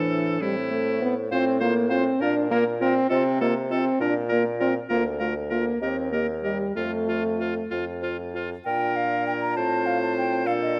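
A straight 6/8 pulse at 66 dotted-quarter beats per minute drives this quick classical-period movement for wind quintet in B-flat major, tuned slightly high at A4 = 444 Hz, and its mood is spirited and graceful. The silver concert flute carries the melody with a pure, hollow, close-miked tone, tongued notes and vibrato, while the bright, present oboe with light vibrato sings a second line beneath it. A dark, smooth clarinet sits in the background as accompaniment, joined by a French horn whose warm vibrato tone sounds distant and roomy yet stands up front in the balance. The bassoon anchors the bass with a soft-topped, lightly vibrated sound, also up front. The harmony moves from A minor through F, B-flat and E-flat, returning to B-flat before closing on F over A. A new section begins at 8.7 seconds within this short passage cut from a longer piece, all held in a moderate scoring-stage reverb.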